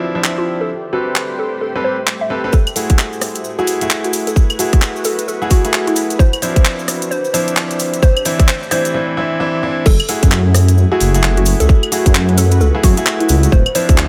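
Skippy and moody, this cut from a longer two-step UK garage track swings at 131 BPM and is tuned slightly below standard pitch. A hollow, bouncy square-wave pluck carries the melody through chorus, cassette-tape colour and delay, alongside clear grand piano stabs treated with dub echo, a cloudy, evolving granular pad breathing with sidechain pumping in the background, and a garage kit of claves, crash, handclaps, rim clicks and warm hats in a small room. A tight, up-front kick and a grainy cabasa join at 2.5 s to drive a build-up that breaks at 8.9 s, then a deep, rumbling detuned saw bass lands with the drop at 9.9 s.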